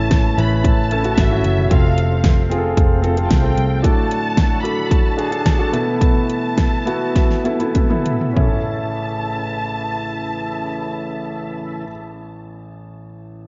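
The clear concert grand piano sits up front, intimate with audible action noise, deep bass and long sustain, carrying the accompaniment across the whole 13.5 seconds of this hopeful, warm piano-driven pop fragment in A major. Above it a distant, lush violin section sings the melody with vibrato, soft attack and portamento, touched by tape echo, while an overdriven tonewheel organ sits in the background holding gritty sustained chords through chorus vibrato and a slow rotary speaker; both stop at 11.9 seconds. A round, foam-muted picked electric bass plays only briefly, dropping out at 3.8 seconds, and a punchy, produced pop drum kit with fat snare and metallic hats drives the straight 4/4 feel until a drum fill closes out its part at 8.4 seconds. The tempo sits between 96 and 113 BPM and slows from 3.8 to 8.4 seconds as the chords move from A through F and D to Esus4 before returning to A. 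The mix is dreamy and soaked in hall reverb, with its top end rolled off for a soft, hazy sheen.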